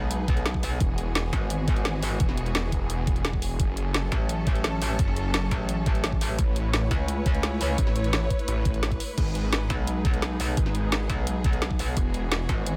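A straight 4/4 groove at 172 BPM drives this dark, aggressive technical drum and bass passage in G# phrygian, with a knocking, overdriven electronic kick and an up-front drum kit of woody snare, bright hats and crash cymbal. Two basses dominate: a metallic FM wobble bass with chorus, and from 0.8 seconds a snarling, detuned sawtooth bass, growling and distorted with sidechain pumping. Beneath them a rich, bowed studio string section holds vibrato-laden chords that pump with the sidechain, moving through G#m, E, F#m and Aadd9 in a dry, close-sounding mix.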